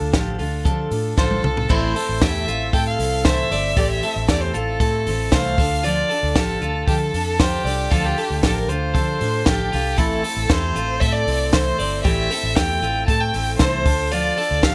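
Wistful and bittersweet, this jangly indie pop excerpt moves at a straight 116 BPM in 4/4, cycling between Dm and Am chords over light reverb. A bright, full-bodied jumbo steel-string acoustic guitar lays down picked accompaniment while a twangy clean electric guitar picks arpeggios through spring reverb, and a dark, round, foam-muted vintage electric bass sits underneath. A dry, punchy compact cocktail kit with dark cymbals and a high-tuned snare plays a fill at 1.2 seconds as a rich, smooth, even bowed solo violin with vibrato enters to carry the melody.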